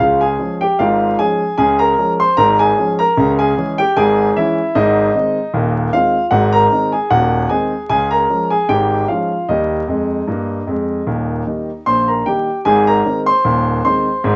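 A warm concert grand piano plays solo ragtime in a cheerful, jaunty 2/4 swing, its deep bass and long sustain sitting up front in a moderate studio reverb, with vinyl crackle and a rough home-demo sound colouring this short cut from a longer piece, as the chords move from Db through Dbm and Ab7 to Eb before landing on Ab at 12.7 seconds.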